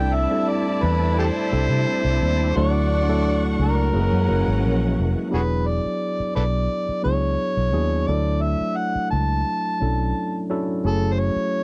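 A straight 4/4 soul groove at 87 BPM, tuned to A4 = 439 Hz, carries this silky, bittersweet passage cut from a longer piece. Up front, a round, punchy, foam-muted fingered electric bass anchors the low end, while a worn tine electric piano, slightly out of tune and heard through its built-in speakers, plays clean accompaniment. An amplified, gritty, overdriven harmonica takes the jazz-style solo melody with light vibrato, tongue slaps and scooped notes. For the first 5.3 seconds, a lush, distant violin section adds a bowed second line with portamento and soft attack, while a very quiet tonewheel organ holds thick chords with key click and a slow rotary speaker. The harmony moves from C69 through Dmaj7 and F#9 into E7, Dmaj7 and F#m7, set in a dry, close 1970s-style studio sound with small room reverb.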